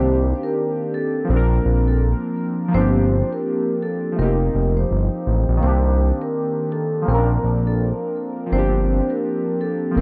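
Hip hop at 83 BPM in C dorian, melancholic and hazy, with a swung sixteenth feel and chords moving through Cm7, Bb, Gm7 and F9sus4 across this 10-second excerpt cut from a longer piece. Warbling, detuned synth keys carry the accompaniment up front, colored by chorus, phaser and cassette tape character, while a smooth, mellow synth bass with a ring-modulated edge sits prominently beneath. A soft-mallet vibraphone plays a quiet, ringing, metallic melody with slow motor vibrato, set in a small room with light reverb and an overall cassette tape sheen.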